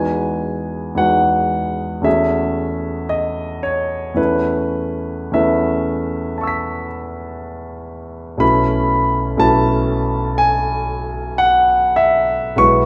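Hazy and serene, this short impressionist classical passage for solo piano drifts with a rubato feel in 4/4, cut from a longer piece. A clear concert grand carries it alone from start to finish, spanning from deep bass notes up into the high treble, with a natural, up-front presence. Lush, extended harmonies color the music, opening on Emaj9 before moving to F#m9/E at 2.1 seconds and Aadd9/E at 4.2 seconds, all resting over an E in the bass. A B11 chord arrives at 8.4 seconds and lingers toward the end. A wet recital-hall reverb surrounds the instrument, giving the chords a soft, misty halo that suits the dreamy character.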